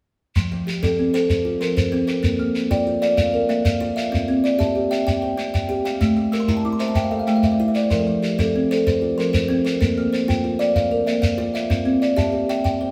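Southern African traditional music in a hypnotic 12/8 mbira-style interlocking cycle, heard as a short section cut from a longer piece. Two kalimbas weave arpeggios throughout. One sits up front with a bright, woody thumbnail pluck on a solid board. The other is a hollow-box instrument with a thumb pluck and airy ring that reaches higher. A grainy, mellow shekere sits close beside them. A kalimba fill runs from 6.2 to 7.9 seconds, and a wet stone room gives the live ensemble a resonant tail.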